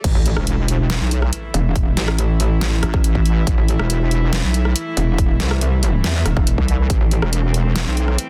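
This fragment of a longer track opens straight into a chaotic, aggressive heavy wobble dubstep drop in a half-time feel, with a very quiet electronic swell and impact filling the first 1.8 seconds. A heavy, detuned square-wave wobble bass sits up front, saturated and overdriven with chorus, and a metallic FM wobble bass joins at 0.2 seconds, just as forward and gritty. Underneath, a punchy, overdriven electronic kick runs until 7.0 seconds, while a layered dubstep kit adds a deep snare, rim clicks, hi-hat and crash cymbal. Far in the background, a chamber string section holds sustained bowed chords with a reedy gut-string tone and light vibrato, pumping from sidechain compression. The mix is dry, dense and heavily limited.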